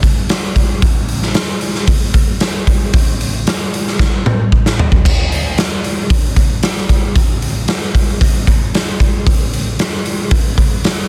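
A raw garage drum kit carries this restless, cathartic rock excerpt on its own, playing a straight 4/4 at 114 BPM from 0.0 to 11.0 seconds. Its punchy kick, medium-tuned snare, hi-hat, toms and crash cymbal sit up front, saturated and gritty with a rolled-off top. The acoustic kit rings in a bright stone room that pumps around the hits, though the overall sound carries little reverb. A drum fill from 4.0 to 5.1 seconds closes the opening section and leads into a second section that runs to the end. The dense, heavily limited modern master keeps the whole cut loud and pressed together, like a fragment lifted from a longer piece.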